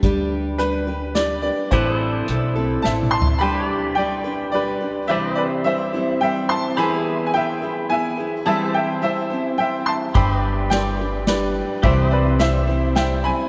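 A brilliant, woody upright piano carries the melody up front in this dusty, lonesome honky-tonk waltz, cut from a longer piece, over picked steel-string acoustic guitar with audible finger squeak, twangy pedal steel chords set in the background, and a growly pizzicato upright bass and an unplugged drum kit with a punchy kick and dark cymbals; the bass drops out at 3.3 seconds and the drums at 3.4 seconds after a fill, and both return at 10.2 seconds, all inside a vast, echoing cathedral reverb.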